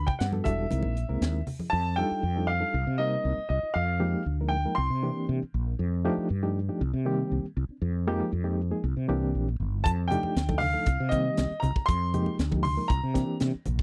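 A round, punchy fretless electric bass sits up front through this driving, funky electric jazz fusion excerpt, dark and direct as it moves in a straight 4/4 at 118 BPM. A reedy electric piano with a fast tremolo holds the accompaniment throughout, sounding clean through its built-in speakers, while a clear, intimate baby grand carries the melody high in its range, its action noise audible and its long sustain marked by a slapback echo. A tight funk drum kit, with a high-tuned snare, tight kick and hi-hat, and soft-handed, thin-skinned congas in the background play only briefly at the opening before falling away. The piano melody drops out at 5.2 s and returns at 9.8 s, just before the drums and congas rejoin to push the groove to the end. The harmony cycles through F13, Cm7, Fm11 and C9 in a dry, close 1970s-style studio sound with little reverb.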